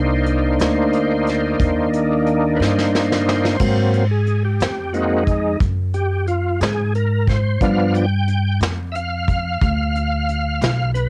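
A gritty, thick overdriven tonewheel organ takes the lead with sustained chords through a slow rotary speaker and chorus vibrato in this soulful, mournful slow blues fragment in C minor at 60 BPM in 12/8, moving from Cm9 to Ab7 to G7 over a woody pizzicato upright bass and a dark, rolled-off vintage brush drum kit that enters at 0.3 seconds and plays a fill from 2.6 to 3.6 seconds, all captured as a home cassette recording with light reverb.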